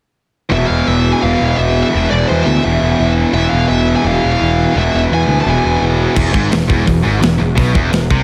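Lightly reverberant and aggressive, this relentless heavy metal excerpt opens with a high-gain lead guitar carrying a distorted melody through digital delay over two bright, distorted rhythm guitars picking a low riff (one sitting in the background) and an up-front, punchy fuzz bass. The lead drops out at 5.8 seconds, and a tight, mid-forward acoustic drum kit with a rolled-off top enters at 6.2 seconds, pressing onward with crash, hi-hat, kick and snare.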